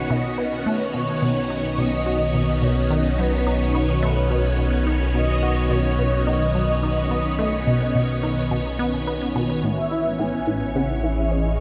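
Ambient, sequencer-driven space music at 107 BPM, expansive and luminous, where a round, horn-like synth lead carries the melody with vibrato, phaser and tape echo over swirling, bright string-machine chords, a juicy, squelchy resonant blip pluck riff, and an evolving, warbling analog drone bass, all steeped in a huge ambient reverb within a dark, warm production as the harmony moves from Badd9 to Amaj7 at 9.6 seconds in this cut from a longer piece.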